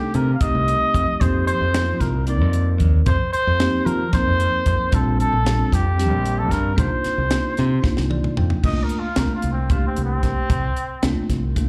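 This short cut from a longer electric jazz fusion piece sounds like a live club gig heard through the venue's PA, with small-room ambience and club reverb around the band. The mood is driving and intense, set in an odd 7/8 metre with a straight feel. A tight funk drum kit sits up front, dry and polished with a high-tuned snare, a tight kick, bright cymbals, hi-hat and toms, while a fingered electric bass lies close and direct with a modern edge. A bell-like tine electric piano comps through its built-in speakers, coloured by phaser and slapback echo, as a cup-muted trumpet carries the melody in a soft, veiled, vintage jazz tone with vibrato and its own slapback echo. The harmony moves from Cm69 through F7sus4, Bb69 and Cm11 to C13sus4. Drums and electric piano both play fills from 7.8 to 8.6 seconds, and then the muted trumpet takes a solo until the cut ends.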